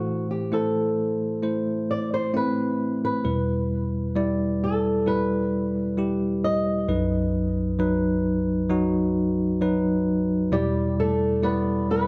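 A bright, bell-like tine electric piano carries the accompaniment up front beneath a thumb-plucked flamenco guitar melody with fresh strings in this longing, emotional 66 BPM pop piece in E minor, moving through Am, Em and B before settling on Em7 at 10.5 seconds, all wrapped in a dark production and a wet recital-hall reverb, cut from a longer piece.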